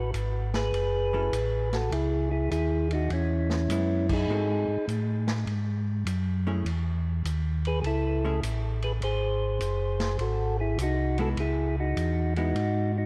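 Lightly reverberant studio sound frames this soulful, late-night soul jazz organ trio excerpt in C# minor at 101 BPM with a swung feel: a round, percussive tonewheel organ with third-harmonic percussion carries the melody through a slow rotary speaker and analog delay, while a mellow second organ with chorus vibrato and key click holds the bass up front; a dark, compressed hollow-body jazz guitar enters at 1.1 seconds with picked accompaniment, a vintage acoustic drum kit with a rolled-off top and punchy kick sits mid-forward, and the band hits an accent at 4.0 seconds as the chords move from F#m through G#7b9 and Amaj7 to C#m.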